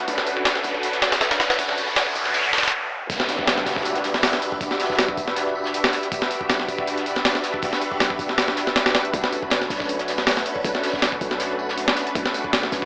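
Driving at 159 BPM in 4/4 with a light swing on the 16ths, this frenetic, dark drum and bass and jungle cut in E minor pairs an up-front, gritty, pitched-up breakbeat sampler kit with thumpy kick, a very quiet loose acoustic indie kit with tambourine, a deep, boomy 808-style bass in the background, and silky, chorused string-machine chords moving from Bm7 to Em7, while a background riser and noise sweep build until a brief stop at 2.7 seconds and the drop at 3.1 seconds, all colored by cassette-tape, AM-radio grit and echo-chamber reverb.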